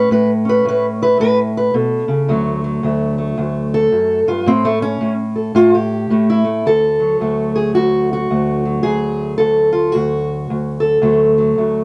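A fingerpicked steel-string acoustic guitar opens this short excerpt of acoustic country blues, its dark, boxy parlour tone sitting up front in a moderate studio reverb. The swaggering, laid-back playing moves at 110 BPM in D major with a swung feel, ranging from D2 to B4 and touching A and D chords before a brief chordless passage at 4.5 seconds. At 6.7 seconds it settles back onto D as a second section begins, the production staying dark and warm throughout.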